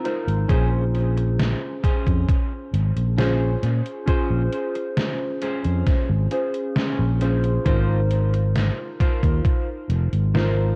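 A cassette-tape haze and heavy echo hang over this short vaporwave fragment, cut from a longer piece, while the room itself stays dry. Its woozy, hazy mood sits on a straight, slow pulse carried by a thumpy, tape-warm electronic kick placed up front, with a gated 80s digital drum machine adding overdriven hi-hat and snare that are drenched in gated reverb and dub echo. A growly, amped fretless electric bass sustains low and prominent beneath warbling lo-fi synth keys, whose square and sawtooth tones, filter sweep and lush chorus give a mellow, nostalgic bed. A dark, clean electric guitar plays a fingered riff in the same register as the keys, sitting quieter in the blend with subtle chorus and dub echo. The harmony rests on Bbm9 from 0.5 seconds before moving to Ab69 at 7.7 seconds.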